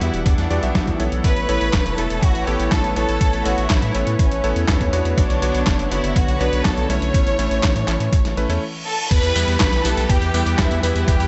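A lightly reverberant, dull-topped mix carries this playful, romantic italo disco passage at 122 BPM in a straight 4/4, where a lush, distant violin section sings the vibrato-rich melody through digital delay and shimmer reverb over a smooth, warbling analog pad of detuned sawtooth chords and cutting, clangy electric grand piano stabs, while a round, deep analog bass and a thumpy electronic kick anchor a gritty, overdriven sampler-style kit of snare, hi-hat, handclaps, tambourine and crash with gated reverb, until a very quiet reverse cymbal and downlifter enter at 8.5 s, leading into a short break and the shift to E minor at 9.1 s.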